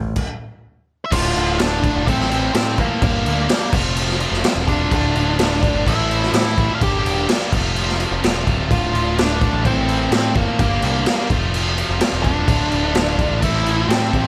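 Growling, overdriven picked bass opens this brooding, dark quiet-loud alternative rock excerpt in D minor at 127 BPM, with a saturated, boomy garage drum kit up front hitting a stop from 0.2 to 1.1 seconds before a dark octave-fuzz lead guitar with tape echo enters at 1.1 seconds over a background wall of bright fuzz, scooped and double-tracked high-gain riff guitars cycling Dm, Am, Gm and F in a dry mix.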